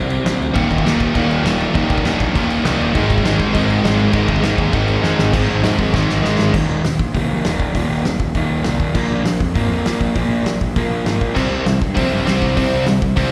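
Heard as a live gig through the venue's PA with a recital-hall sheen, this energetic, upbeat punk rock excerpt pairs a crunchy overdriven guitar riff with a growly fuzz bass and a loose, roomy drum kit with dark cymbals, a fat snare and a punchy kick, while a second, biting guitar with slapback echo plays from 0.5 to 6.5 seconds, then returns at 11.3 seconds, after drum fills lead into the closing section at 6.5 seconds.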